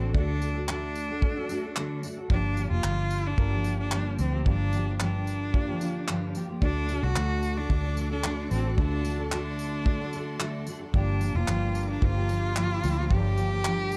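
Acoustic pop in G minor at 111 BPM, tender and wistful, this short passage cut from a longer piece sets a clear, focused bowed cello melody with vibrato, touched by plate reverb and delay, over a full-bodied fingerpicked steel-string guitar, double-tracked, and a mellow, woody upright piano sitting in the background. Beneath them, a round, foam-muted vintage electric bass and an up-front, cloth-damped drum kit with a tight kick, handclaps and tambourine hold a straight 4/4 pulse as the chords move between D and Gm7. At 6.6 seconds a lush studio string section enters behind the cello with sustained chords, deepening the dark, softly reverberant production.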